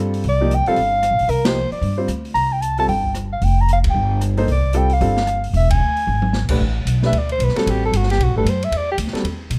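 A brisk, swung 4/4 pulse drives this short, hypnotic and intense modal jazz passage, cut from a longer piece. The open, acoustic drum kit, with its boomy kick and medium-tuned snare, uses ride, hi-hat, rim clicks, toms and crash. The plucked upright bass sits up front with a woody, thumpy tone from its steel strings, while the grand piano supplies intimate accompaniment, its action noise audible in the close, dry room sound. Over them a mellow soprano saxophone carries the melody with light vibrato, a soft attack, scooped notes and a smooth top. The band punches out several shared accents as the harmony moves from a suspended opening toward a dominant color, and a drum fill at 6.1 seconds leads into a new section built on A9sus4. The saxophone solo begins at 6.6 seconds.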